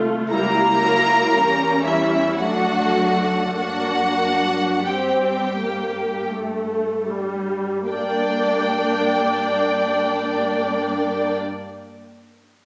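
An up-front violin section carries a smooth, vibrato-rich melody above a softer, more distant second violin line in this melancholic, elegiac slow movement for string orchestra, cut from a longer piece and moving in a rubato triple metre that slows through the first 7.9 seconds. Dark violas with expressive portamento also sit up front, while a rich, focused cello section and a bowed double bass section in the background anchor harmonies passing from C#dim7 through D to Gm. The strings ring in a scoring-stage reverb, but the sound was captured on a phone in the room, which adds a club-like reverb and compression.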